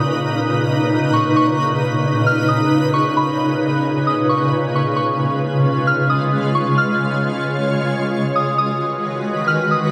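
Hip hop at 133 BPM in a half-time 4/4 feel and B lydian, this dreamy, floating excerpt pairs a bright, detuned shimmering pad holding sustained chords through Bmaj9, C#7 and G#m7 with a soft, pure FM synth bell melody softened by chorus, a low-pass filter and tape echo, all bathed in a huge, wet reverb with a 6.7-second tail.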